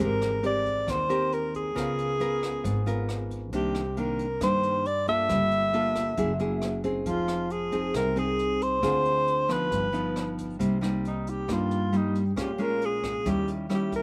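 A breathy alto saxophone leads this smooth, intimate bossa nova excerpt in C minor at 136 BPM, its subtone voice carrying vibrato, scooped notes and a smooth top as it sits up front with a touch of slapback echo. A fingerpicked nylon-string guitar shares the foreground, its classical tone marked by audible finger squeak and the same slapback echo as it comps through lush harmony that moves from Abmaj9 and Db6 into Cm9, Gm9 and a chromatic F#9. Underneath, a woody, dark upright bass plays pizzicato with a steel-string edge, while a jazz brush drum kit enters at 0.2 s, heard distant and roomy with hi-hat, rim click and a boomy kick. The opening passage closes on Dm7b5 and Gaug7 before the saxophone takes a solo from 10.6 s over Cm7, Bbm7 and Eb7b9, and the piece is cut off at 14.0 s. The overall sound is close and dry, with little reverb beyond the drums' small-room ambience.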